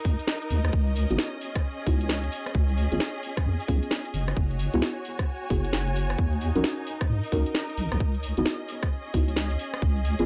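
A dry, gritty recording with light reverb carries this bouncy, late-night two-step garage cut at 132 BPM in C# dorian, where a tight, up-front electronic kick and a tape-warm house kit of cracking snare, rim click and metallic hats swing over a deep, wobbling triangle-and-sine bass with chorus, while muted, veiled con sordino strings pump lushly beneath and, from 1.1 s, a soft, warbling vintage chord stab with chorus, tape echo and a filter sweep moves through chords such as C#m11, F#9sus4 and D#m7.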